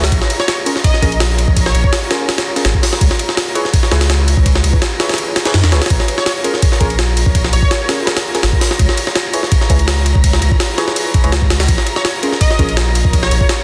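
A gritty, tape-tinged jungle drum kit sits up front in a dense, heavily limited modern mix, its sampler-style hits pitched up and compressed, with a thumpy kick, a high-tuned snare, hi-hat and ride cymbal re-recorded in a large room. This short cut from a longer drum and bass track moves at 166 BPM in Bb minor, with an atmospheric, nostalgic mood, and the kick drops out briefly from 5.2 to 5.9 seconds. Underneath, a soft, round dub sub bass with tube saturation holds sustained low notes, while deep, dark chord stabs with chorus and dub echo sit in the background, cycling between Bbm7 and Dbm7. A very quiet, ethereal pad drifts above with slow-attack sustained chords and a gentle tremolo, joined by a breathy, wind-like tuned noise texture bathed in its own reverb. A catchy, punchy unison lead with vibrato and dub echo surfaces in short phrases, first at 0.4 seconds, then at 6.2 and 12.0 seconds, tucked back in the mix behind the drums.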